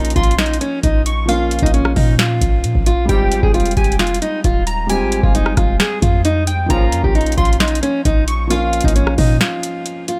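A brooding, melancholic half-time trap excerpt opens with a dark, full-bodied fingerpicked acoustic guitar carrying the melody up front, alongside a felt-muted upright piano with audible action noise, a crystalline detuned wavetable pluck with chorus and delay, a deep, boomy 808-style bass, and a tape-warm analog drum machine with a deep kick, crisp snare, rim click and metallic hats. A very quiet, mellow brass ensemble adds brief stabs with light vibrato at 3.1 and 6.7 seconds as the chords shift, all set in a small room ambience. At 9.4 seconds the pluck and bass drop out, leaving guitar, piano and drums for a short break.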